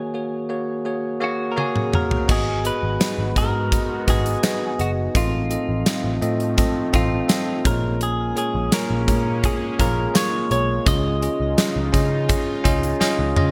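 A straight 4/4 pulse at 84 BPM drives this nostalgic yet urgent 1980s-style pop fragment, cut from a longer piece. It opens on a short break where a clean, direct-recorded electric guitar with subtle chorus carries the melody over a bell-like, bright tine electric piano accompaniment on a Gbadd9/Eb chord, before a drum fill at 1.6 seconds brings in a big, gated 80s kit with a punchy kick, medium-tuned snare, bright cymbals, toms and tambourine. At 2.3 seconds a dark, foam-muted picked bass and a very quiet, detuned sawtooth pad with a resonant filter swell and slow attack join as the harmony moves through Abm7, F7/A, Bbm7 and Dbadd9. A faint, jingly tambourine adds extra shimmer, and another drum fill closes the passage. Moderate plate reverb and bright 1980s-style digital production shape the mix.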